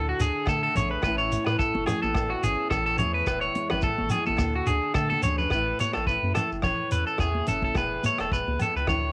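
Swung sixteenths at 107 BPM drive this carefree, danceable highlife guitar band cut in A major, where a twangy, slightly broken-up electric guitar plays up-front picked arpeggios through analog delay over small, fingerpicked nylon-string accompaniment with audible finger squeak, a deep, round dub sub bass, a distant, roomy soul drum kit with a tight kick and a fill at 5.1 seconds, grainy shekere, and ringing agogo bells and high-tuned congas in the background, captured as a home cassette recording with light reverb.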